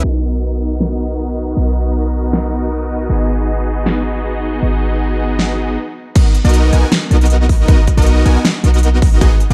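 Bittersweet and dreamy, this future bass excerpt moves at 157 BPM in a half-time feel, cut from a longer piece. Lush, detuned supersaw chords carry the riff throughout, pumping against the sidechain and colored by a low-pass filter and tape echo as they move from Bmaj7 to G#m7. Beneath them, a deep, boomy 808-style bass with a sine body and a noise layer sits up front, also pumping with the sidechain. A big-room dance drum kit supplies a huge snare, crisp hats and crash cymbal, while a filter sweep runs across the opening section and a brief stop at 5.8 seconds sets up the drop at 6.2 seconds. There a punchy, layered electronic kick joins, playing until 9.3 seconds, and the chords return to Bmaj7. The production is dark and warm, with light reverb.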